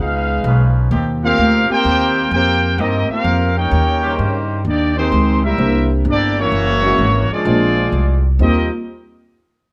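Swinging in 4/4 at 128 BPM in Eb major, this joyful, energetic big band jazz excerpt puts a clear, tight trumpet section up front on the melody over a loose trombone section's second line and a woody pizzicato upright bass, while a nasal, straight-muted trombone section holds background chords from 0.5 to 4.1 s and a smooth vintage grand piano joins the accompaniment at 5.6 s, set in a moderate large-studio reverb.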